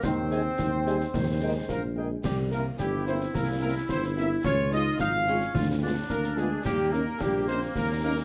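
A brisk 2/4 march at 109 BPM with a straight feel sets a festive, rousing mood in this military-style excerpt for wind band, driven by close, dry concert snare drum, concert bass drum and dark clash cymbals under a mellow, up-front tuba bass line. From 0.3 s, a clear, close-miked trumpet section with light vibrato carries the melody, while a background French horn section with a smooth top fills in accompaniment. A punchy, tight woodwind section and a distant, roomy euphonium share a second line, and a present trombone section holds sustained chords until 1.9 s, all set in a moderate large-studio reverb over a harmony moving through Ab, Eb, C7, Db and Ddim7.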